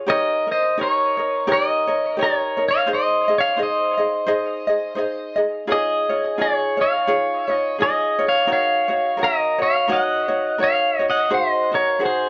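An electric pedal steel guitar carries the melody up front, its clean, twangy, compressed tone shaped by fingerpicks, slide and volume swells and trailed by tape echo. Beneath it, a light, fingerpicked acoustic ukulele provides the accompaniment in this sunny, dreamy Hawaiian piece, moving through a gently swung 4/4 from Eb7 to Ab7. The dark, warm production sits in moderate studio reverb, and the 12.3-second clip is taken from a longer piece.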